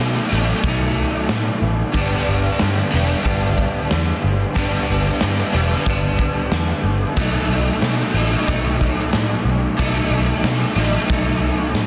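A straight 4/4 rock groove drives this hazy, wistful shoegaze and dream pop fragment, cut from a longer piece, with a big-room acoustic drum kit arriving at 0.6 seconds with hi-hat, a medium-tuned snare and a punchy kick placed up front. A raw garage guitar plays a riff with overdrive and analog chorus, while a biting overdriven guitar also plays a riff further back through reverse reverb, and a vintage foam-muted picked electric bass adds a dark, round, amped low end. The harmony moves from B7 to G and back to B7, all set in light reverb and studio ambience under a dense, heavily limited modern master.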